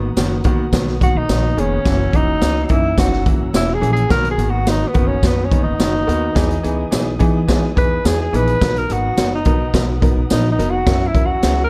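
Opening on a clear, slightly detuned upright piano, a woody, thumpy upright bass and a very quiet, flute-like tonewheel organ with key click and rotary speaker, this joyful, uplifting 1960s-style soul excerpt adds a boomy, roomy drum kit and a jingly tambourine at 0.2 s before a breathy, vintage tenor saxophone with light vibrato takes an up-front solo at 1.0 s, in a dark, dry production.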